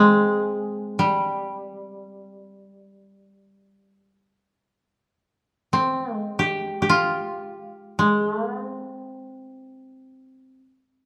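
Japanese traditional music in free time, this short passage is calm and austere, cut from a longer piece. A solo koto carries it from 0.0 to 10.6 seconds, played with fingerpicks and staying between G3 and G4. The acoustic instrument sounds mellow and woody, placed up front with a dry character to its own tone. Around it, a moderate recital hall reverb, with a decay time of 1.5 seconds, adds a sense of space. The production overall is dark and warm, suiting the music's still, restrained mood.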